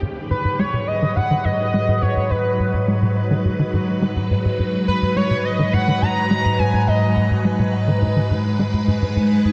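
Ambient, sequencer-driven space music at 105 BPM in G# minor, mysterious and cosmic, where a swirling, vintage string machine with phaser holds a sustained G#m7 chord over a tight, punchy sawtooth sequencer bass riff, a shimmering pulse-width lead with vibrato sings the melody from 0.3 to 7.4 seconds, and a metallic vibraphone arpeggio rings in only at 9.2 seconds, inside a huge, dark reverb.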